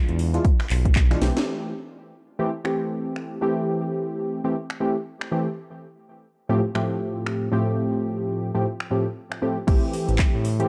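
Deep house at 117 BPM in A minor, moody and swung, cut from a longer piece. Round, detuned analog keys play chorused, decaying stabs throughout, pumping against the sidechain and passing through tape echo, with a long filter sweep from 1.5 to 9.7 seconds as the chords move from Am7 to G9sus4/A. A smooth, sawtooth-and-triangle synth bass with vibrato sits up front but appears only briefly at the start and again at the drop from 9.7 seconds, where a dry, punchy, overdriven electronic kick also returns. Underneath, an overdriven, layered house kit with a cracking snare, metallic hats, claps, finger snaps and crash cymbal runs the whole way, its sound re-recorded in a large room, while a very quiet brushed jazz kit adds natural small-room hi-hat and snare at the edges. A drum fill and band accent around 1.2 to 1.3 seconds lead into the filtered middle stretch, and light reverb lends a soft glow to the mix.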